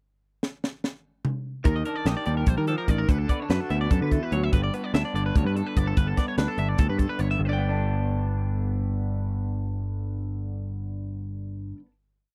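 A dry, close 1970s-style studio sound with a faint mains hum frames this bright, playful math rock and midwest emo piece in 7/8, where a crisp, up-front fusion drum kit with a high-tuned snare and tight kick opens with a fill at 0.4 s before a punchy, syncopated picked bass riff, a twangy twelve-string electric guitar ostinato and a slightly broken-up, lo-fi rolling arpeggio from an electric guitar through a small old amp with analog chorus carry the chords from Ebmaj7 through Bm7/D to G, settling on a final chord from 7.4 s.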